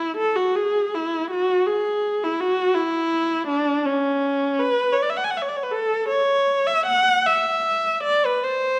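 A moderate recital-hall reverb surrounds a close, up-front solo viola in this brief, nostalgic classical fragment, cut from a longer piece. Played freely in 6/8 with rubato at roughly 49-57 BPM in dotted quarters, the lyrical bowed line spans C#4 to G#5 across its 8.8 seconds. The single player's warm tone carries expressive vibrato, portamento and soft attacks.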